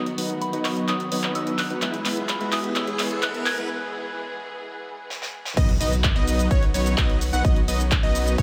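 A straight 4/4 pulse drives this euphoric, anthemic slice of festival progressive house, cut from a longer piece. A layered big-room drum kit with a huge snare, handclaps, hi-hat, shaker and crash cymbal carries a build-up full of drum fills, while a filter sweep moves across the lush, detuned supersaw chords and a dark, woody string section holding sustained chords. Underneath sits a deep, saturated sine sub bass, kept in the background, and a very quiet electronic riser and impact add tension. A soft, pure FM bell melody with chorus, phaser and dub echo floats above until a brief break at 3.7 seconds. At 5.6 seconds the drop lands with a punchy, up-front kick and a catchy plucky unison lead playing arpeggios, as sidechain pumping makes the strings, supersaws, bass and lead breathe in time under light digital ambience.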